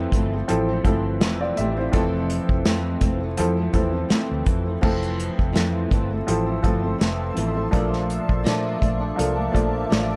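Sunny and laid-back, this bedroom-pop excerpt in F major moves at an unhurried 83 BPM with a light sixteenth-note swing, resting on Fmaj7 before shifting to Bbmaj7 at 7.7 seconds. A fingerpicked flamenco guitar with analog chorus and a warbly pitch drift sits alongside an intimate, woody upright piano, slightly detuned and up front with audible action noise, while a dark, round, foam-muted electric bass anchors the low end. An airy acoustic drum kit played with bundle sticks carries a gritty 12-bit sampler texture, and from 6.1 seconds a bright, blurred granular cloud pad with its own reverb drifts in high above, all within a small-room ambience.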